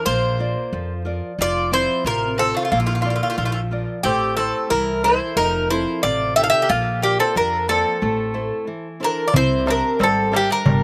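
A bright, metallic Greek bouzouki carries the melody up front, its picked double strings with some octave-doubled courses ringing through a short slapback echo. Set in Greek folk style at 90 BPM in a straight 2/4, this short cut from a longer piece feels bittersweet and moody as it moves through Bb, F, Am and F7 before landing on C. A bowl-back mandolin picks a quieter second line on its double strings, sharing the same slapback echo, while a nylon-string guitar with fresh strings fingerpicks a classical accompaniment in a warm tone. Beneath them, a woody, thumpy upright bass with gut strings plays pizzicato in a dark low register. At 9.3 seconds a small, high-pitched darbuka with a clay shell and natural skin joins as the music turns to a new section. The band was recorded outdoors with little reverb, so the playing sounds close and unadorned.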